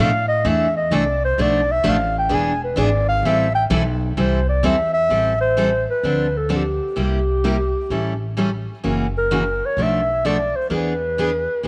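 A breathy clarinet carries the melody in this swinging, virtuosic slice of acoustic string swing in the jazz manouche style, its dark subtone, scooped notes and vibrato captured close and intimate, almost whispered, with a soft attack. The tune sits in A minor at 129 BPM with a light swing on the eighth notes, and the clarinet takes a solo spot over the opening 5.1 seconds before the passage moves into a second section. A picked steel-string acoustic guitar with fresh strings supplies the accompaniment, sounding warm, while an upright bass on gut strings adds a woody, thumpy pizzicato foundation. All three parts sit up front, and a moderate plate reverb gives the ensemble a lingering halo. The harmony travels through minor-key jazz changes such as Bm7b5, E7 and Am7, then Dm7, C7, A7 and F#7, before circling back toward E7 near 10.7 seconds, as this cut from a longer piece breaks off.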